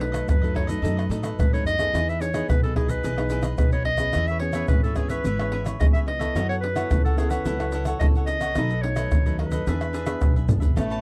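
This dry, close recording has the character of a 1970s studio session, with only a light reverb around the players. It is a lively, joyful passage of samba and choro in a straight 4/4, cut from a longer piece, with every part playing from the start through to 11.0 seconds. A bright, punchy clarinet carries the melody as a present, classical-style solo, while a crisp, picked cavaquinho and a fingerpicked nylon-string guitar provide the accompaniment. Beneath them, a woody upright bass played pizzicato on steel strings holds the low end, and an up-front percussion section of pandeiro, tube shaker, tamborim and a tight surdo sits close to the listener. The harmony moves from B7 through Emaj7, C#m7 and F#m7 before returning to B7 and E7, and a drum fill at 10.1 seconds rounds off the passage.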